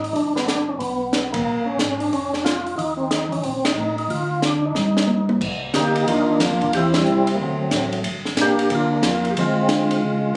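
A swinging 4/4 pulse at 182 BPM drives this bluesy, soulful soul jazz organ trio, cut from a longer piece and tuned to A4 = 444 Hz. A compact cocktail drum kit sits up front with a dry, acoustic sound, dark cymbals, a high-tuned snare and a punchy kick, moving across hi-hat, ride, crash, snare, kick and toms. The bass line comes from a mellow, round tonewheel organ with audible key click through a slow rotary speaker. A second tonewheel organ carries the melody up front with a full, lightly overdriven, percussive tone, chorus vibrato and its own slow rotary speaker. The tune opens in Eb major, and after a drum fill starting at 4.8 s it shifts to C minor at 5.4 s, with band accents punctuating the groove along the way. Captured on a phone in the room, the recording carries a moderate club reverb.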